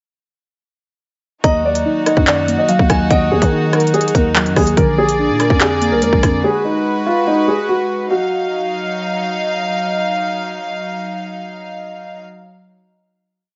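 Lightly reverberant and dim at the top, this short drill piece in E-flat harmonic minor sits at 144 BPM in a half-time 4/4 feel, with a menacing, cold mood. Everything enters together at 1.4 seconds: a dark concert grand piano carries the looping melody, boxy and intimate with audible action noise, softened by a low-pass filter and tape echo. Beneath it, muted, felt-like synth keys with chorus play a patterned eighth-note arpeggio, while a delicate, tinkling FM tine bell drifts in the background with a sparse, tape-echoed counter-melody, and a studio string section holds pure, floating bowed chords played sul tasto. The up-front electronic drum kit drives a drill beat of hard-clipped kicks, crisp skipping hi-hats with fast rolls, handclaps and rim clicks, as a growling, buzzy 808 bass follows the kick with long, sliding sub-bass notes. The harmony moves from E-flat minor through B-flat seventh and A-flat minor seventh, then the drums, bass and synth keys drop out between 6.3 and 6.5 seconds, leaving the piano and strings to settle onto a final E-flat minor add-nine chord that the strings sustain until 12.2 seconds.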